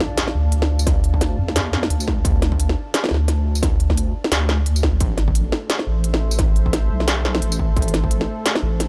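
Half-time drum and bass at 174 BPM in D minor, this dark, spacious excerpt swings its sixteenths over a Dm to Am progression. A very quiet electronic impact opens the passage beside a moody, detuned analog pad with chorus and sidechain pumping, and a deep, saturated wobble bass with its own chorus enters up front at 0.4 seconds. The industrial kit brings a clanging snare, crisp hats and tambourine, and a distorted electronic kick joins at 0.9 seconds, all within a gritty, dry digital ambience.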